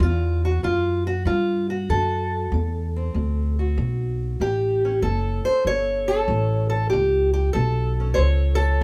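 A swung 4/4 at 96 BPM drives this soulful, rollicking acoustic country blues excerpt, where a boxy, parlour-toned fingerpicked steel-string guitar carries the melody up front over a woody, thumpy pizzicato upright bass on gut strings, both sounding from 0.0 to 8.8 s in light reverb as the harmony moves from D7 to A7 at 4.4 s.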